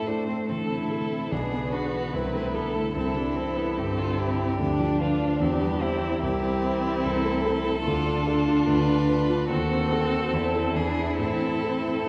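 From the first beat a piano quintet sets off into a quick, dramatic, stormy classical-period passage cut from a longer movement, with a rich, smooth, evenly bowed violin carrying the melody over a second violin and viola that slide expressively with vibrato, a very quiet, distant cello line with a soft attack, and an up-front concert grand piano with deep bass, heard from further back in a wet concert hall.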